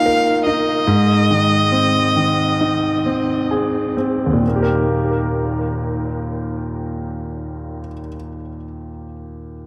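A single bowed violin, focused and smooth on top with gentle vibrato, plays a tender, hopeful melody up front before falling silent at 3.5 s. Beside it, a clear, intimate grand piano with audible action noise carries the accompaniment through to 9.7 s. This slow pop excerpt in Eb major moves at 62-73 BPM in a straight 4/4, easing its tempo over the first 4.4 s as the harmony passes from Ebsus2 to Ab and settles on Eb, and both instruments carry dub echo within a moderate spring reverb, giving the mix a heavily echoed, spacious feel.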